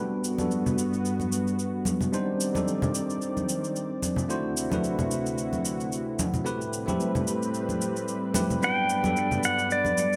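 A wet plate reverb and bright 1980s-style digital sheen frame this relaxed, smooth sunset chillout excerpt in G major at 111 BPM, with a 16th-note swing moving through Gmaj7, Cmadd9, D9 and Am9. A bell-like, clean tine electric piano runs through a low-pass filter sweep and digital delay over a lush, detuned unison pad thickened with chorus, while an overdriven, electronic cabasa and ringing, medium-tuned congas keep the groove. At 8.6 s a compressed electric pedal steel guitar, played with fingerpicks and slide, enters up front with volume swells to carry the melody.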